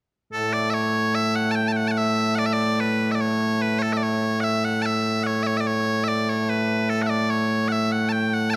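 Ceremonial and proud, this brief cut from a longer Scottish traditional piece moves at a stately 73 BPM in a straight 2/4, set in A major. Solo bagpipes carry the melody from 0.3 seconds, loud, piercing and continuous, sitting up front across a span from A2 to A5. Close, detailed microphones capture the bright tone, while a moderate concert hall reverb with a 1.8-second decay lends it a sense of grand space.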